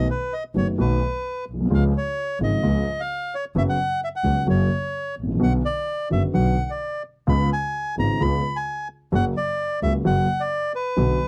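A dry, close recording with a 1970s studio character frames this short, dramatic and melancholic tango cut from a longer piece, moving at 130 BPM in 4/4 with a rubato feel in B harmonic minor, tuned to A4 = 445 Hz. A reedy, dark bandoneon sits up front carrying the melody, while a mellow baby grand piano, intimate and vintage with its action noise audible, supplies the accompaniment over a single bowed double bass that sounds earthy, with light vibrato and a smooth top. The harmony passes through B7, C#, F#sus4, Bm and C#7 before settling on F# at 9.1 seconds.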